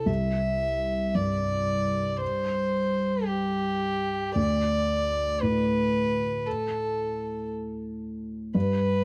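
A gently lilting 6/8 pulse, felt in slow dotted-quarter beats, moves with a flexible rubato that lets the phrases breathe in this short neoclassical passage, cut from a longer piece, for piano and strings. The mood is tender and intimate, like a private moment shared in a small room. A felt-muted upright piano carries the accompaniment throughout, sitting up front with a soft, mellow, dark tone shaped by thick felt, and the faint clatter of its action is audible beneath the notes. Above it, a single bowed violin sings the melody in a fairly narrow upper register, its sul tasto playing giving a pure, floating sound with a soft attack, while a tape echo lends it a distant, dreamlike halo. The harmony rests on C at the start and shifts to D5 at 4.4 seconds. The close, dry studio sound, with only light reverb, evokes an intimate 1970s-style session.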